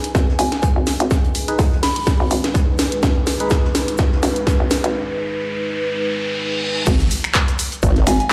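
A swung 4/4 groove at 125 BPM drives this aggressive, bouncy bass house excerpt in G# minor, built on a punchy, overdriven electronic kick sitting up front alongside an overdriven house kit of crash, finger snaps, handclaps, hi-hat, shaker and a cracking snare, with a distant, roomy soul kit of hi-hat, shaker and snare tucked in the background. A hollow, knocking FM bass bounces low beneath a deep, moody analog pad of detuned sawtooth chords carrying vintage sampler grit and sidechain pumping, while a very quiet, warbling tape-like pad adds nostalgic lo-fi haze until 4.9 seconds. Early on, a soft, pure synth bell with chorus and digital delay sings a brief high line, and a dark, organ-like percussive stab flickers in the background between 1.5 and 3.5 seconds. A drum fill runs until 4.9 seconds, and an electronic riser with a reverse cymbal builds tension through the break that follows, leading to the drop at 6.9 seconds; shortly after, at 7.8 seconds, a detuned, formant-swept wobble bass bursts up front. 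The whole piece rings through a large studio reverb, as if played on a big sound system in a bare room.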